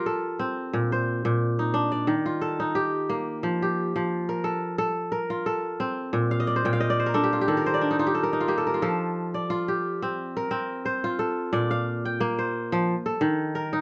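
A mellow, ringing kora, fingerpicked up front with a crisp acoustic tone, carries this joyful, lightly swung West African traditional passage cut from a longer piece, slipping in a fill at 6.3 seconds before a new section begins at 8.8 seconds, all wrapped in light reverb with softly rounded highs.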